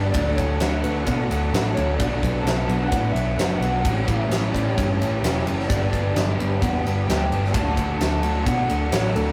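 A dark, round, foam-muted electric bass sits up front with a big-room rock kit of punchy kick, fat snare and bright ride cymbal in this dreamy, wistful shoegaze and dream pop excerpt, where a crunchy overdriven guitar and a raw garage guitar play riffs in the background alongside a faint, double-tracked semi-hollow guitar, a warbling vintage FM synth lead carries a gentle, keys-like melody through chorus and analog delay, and a silky, very quiet string machine holds chords over a Dmaj7, Bm7, A7 and Gmaj7 cycle, the whole band heard in a rough rehearsal-room recording with small-room reverb and warm saturation.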